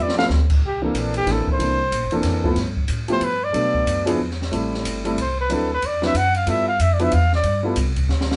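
Small-group swing and bop jazz in a brisk 3/4 at 185 BPM, this short cut from a longer piece feels sophisticated and playful, with a 62% swing on the eighths and a G mixolydian colour built on chords such as G13, C13, Am7 and D13. A dark, breathy trumpet carries the melody as a solo from the start, up front with vibrato, scooped notes and a smooth top, ranging from Bb3 to F#5. An upright piano, woody and close, accompanies in the middle register, while a pizzicato upright bass with steel strings gives a growly, thumpy low end. An open jazz drum kit with dark cymbals, a high-tuned snare and a boomy kick plays crash, hi-hat, ride, snare and kick, opening with a fill and adding another at 8.1 seconds. The band plays live in one room with moderate studio reverb, and the sound stays mellow at the top, with a brief break in the harmony at 4.2 seconds before the changes resume.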